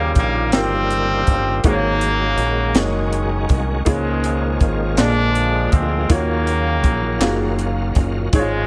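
Slow gospel in a straight 6/8, soulful and jubilant, heard as a short cut from a longer piece. A tight, vintage horn section carries the melody up front with a clear, punchy tone, over a worn, woody upright piano that sounds slightly detuned. Behind them, a tonewheel organ holds sustained chords with a shouting, lightly overdriven character, key click, chorus vibrato and a slow rotary speaker. A dark, round fingered electric bass comes through direct and amped, while an acoustic drum kit with an airy, polished studio sound brings hi-hat, a high-tuned snare and kick drum from 0.2 seconds. A very quiet group handclap, crisp and dry, joins between 5.0 and 7.6 seconds as the harmony moves from Bb7 to Ebm9, the whole band set in light reverb and studio ambience.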